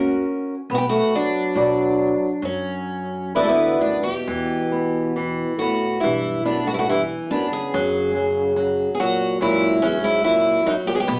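The sound is that of a band playing live together in one large studio, with moderate reverb and a small-speaker character. This short cut from a longer fado-style ballad in B minor feels mournful and longing, moving in a rubato 4/4 at roughly 65-74 BPM. A picked twelve-string acoustic guitar carries the melody up front, its octave-doubled strings shimmering with a concert polish. Beneath it, a breathy trombone sings a dark, whispered second line with light vibrato, soft attacks and scooped notes in an intimate jazz manner. A fingerpicked flamenco guitar, also up front, supplies warm accompaniment with the odd finger squeak, while a pizzicato upright bass with steel strings gives a woody footing lower in the mix. The harmony settles from F# to Bm, then moves to Em at 4.3 s and F#5 at 7.7 s, with all four instruments playing throughout.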